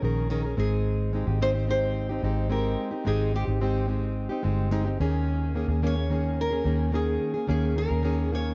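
A dark, round electric bass with a foam-muted, amped tone sits up front in this easy-going, heartfelt pop excerpt, anchoring the low end throughout. Beside it, a plugged-in jumbo steel-string acoustic guitar plays a full-bodied fingerpicked accompaniment, also close and present. From 0.6 s, a small nylon-string guitar carries the melody with a bright, lightly chorused sound, sitting a little quieter than the other two parts. The harmony moves from Eb7sus4 to Abmaj7 and back to Eb7sus4 at 5.0 s, giving the passage a relaxed, open feel in a straight 4/4. Light reverb and a small-room ambience surround the parts, and the cassette-tape recording lends the whole fragment a vintage character.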